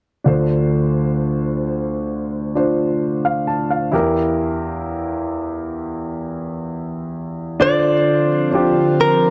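A slow, straight 4/4 pulse at 65 BPM sets the pace for this longing, melancholic pop ballad in D minor, cut from a longer piece. A warm, present, up-front grand piano carries the accompaniment from the opening moments, ranging from low D2 up to A5 as the harmony moves from Dm7 to Edim and back to Dm7. At 7.6 seconds a clean, picked electric guitar, recorded direct and compressed, takes up the melody in a narrow upper register, its tone touched by spring reverb. Shortly after, at 8.3 seconds, a soft, breathy pad with a slow attack and long release adds sustained chords, its triangle and sawtooth layers flecked with noise and shimmering through chorus. The overall sound is dry and close, like a 1970s studio recording, keeping the piano and guitar intimate and near.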